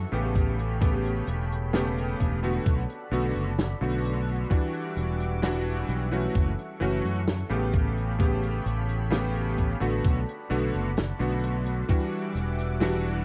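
A straight, slow 65 BPM pulse in 4/4 comes from a thumpy electronic kick and a distant, roomy soul kit of medium-tuned snare, hi-hat and cabasa, anchoring this woozy, melancholic vaporwave piece in E dorian. A round, up-front fretless bass and a clear, vintage electric grand piano with a clangy low end, gritty with 12-bit sampler crunch, ensemble chorus and analog delay, move through A9, Bm7, Em9 and F#m7 over a thick, detuned sawtooth-and-square unison pad with chorus sitting in the background, and the passage carries a cassette-tape haze and small-room ambience.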